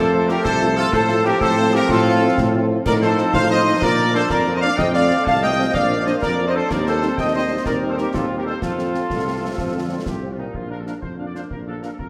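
Set in 6/8 with a straight feel, this proud, spirited military-style march for wind band is cut from a longer piece, with a clear, roomy trumpet section carrying the melody while an airy flute group with crisp attack sits in the background and a distant woodwind section shares the second line. Mellow trombones hold sustained chords, a very quiet French horn section with a smooth top fills in the accompaniment, and a warm solo tuba anchors the bass, as concert snare drum, concert bass drum and dark clash cymbals sound close and dry from 0.3 s. A wet concert hall reverb surrounds the band, and the flutes drop out at 10.3 s, just before the music moves into a new section at 10.5 s.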